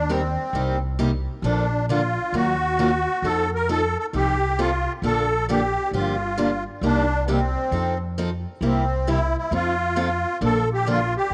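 A swung 4/4 pulse drives this lively, charming slice of acoustic string swing in the jazz manouche style, cut from a longer piece. The upright bass is up front from the first moment, its pizzicato gut strings giving a woody, thumpy foundation. The picked steel-string acoustic guitar joins at 0.1 s as accompaniment, its fresh strings giving a boxy parlour tone. Carrying the melody is a musette accordion, reedy and shimmering with its wet musette tuning, sitting up front in the mix. The harmony moves through jazzy sevenths and added-note chords such as Cm7, Ebmadd9, Gm7 and F7 before settling on Bbmaj7 near the close. A moderate plate reverb lends the ensemble a gentle sheen, and the guitar drops out at 11.0 s just before the end.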